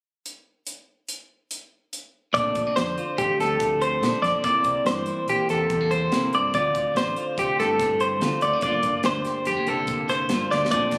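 A crisp, airy fusion drum kit opens this restless, intricate slice of math rock and midwest emo alone at 0.3 s, with a tight kick and medium-tuned snare driving a straight 5/4 at 143 BPM. At 2.3 s the band joins: a warm, compressed twelve-string electric guitar plays up front with spring-reverbed arpeggios, a bright, twangy clean electric guitar picks lower accompaniment, and a growling, overdriven fingered bass anchors the harmony through Bbmaj9, C7, Dm7 and Gm7. A drum fill arrives at 10.5 s, and the whole recording has the close, modest small-room ambience of a phone capture, polished with studio reverb and compression.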